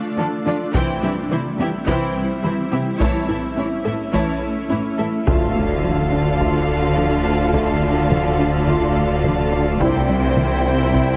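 A straight 4/4 pulse at 106 BPM drives this relentless, futuristic hybrid of orchestra and electronics in D minor, a fragment cut from a longer film cue. A cloudy, evolving granular pad with built-in reverb holds sustained chords from the opening moment, and by 0.7 s a taiko ensemble struck with hard sticks in a small room is playing beneath it. Alongside the pad, background strings fill in the harmony: a smooth violin section as a second line, a lush, focused viola accompaniment and an expressive cello bass, while a very quiet, squelchy, resonant blip pluck with a moving notch filter spins arpeggios. At 5.3 s the texture thickens as a dark, expressive violin melody enters high in its range over a mellow, vintage-tinged French horn section, with double basses, a deep round sine sub bass and a soft-attacked, distant tuba filling out the low end, and a very quiet electronic impact marks the arrival. 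The chords move from Dm through C and A before returning to Dm and ending on C, all set in a moderate scoring-stage reverb with a heavily compressed, radio-like finish.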